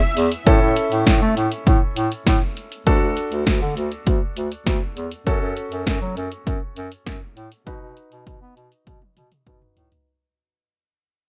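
Upbeat yet wistful synth-pop, a short cut from a longer piece, is driven by an up-front analog drum machine with a punchy kick and snare, a tape-tinged sound and hi-hat and toms, ending on a drum fill from 8.9 seconds. A vintage bass clarinet, warm and up front, carries the bass line in a classical style, while a clear, polished concert grand piano with deep bass and short sustain plays accompaniment through a low-pass filter that sweeps over it. Under light reverb the chords move from A to D, F#m and B as the passage fades out from 0.5 seconds.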